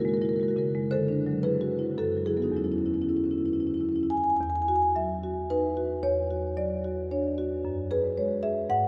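Playful and flowing, this short passage from a contemporary classical piece for solo marimba moves in a rubato 3/4, with the tempo drifting between 93 and 117 BPM. The marimba, struck with soft mallets, plays alone from start to finish across a range from E2 up to G#5, its rosewood bars giving a woody, mellow, round tone that sits up front. The harmony is rich with extended chords, opening on F#9 and passing through D9 and F#m7 before a new section begins at 4.4 seconds on Emaj9. That second part moves through Dmaj7/E and comes to rest on F#sus2 at 7.6 seconds. A wet cathedral reverb with a long 6.3-second decay places the instrument in a vast, echoing space, so each note rings and blooms around the up-front sound of the bars.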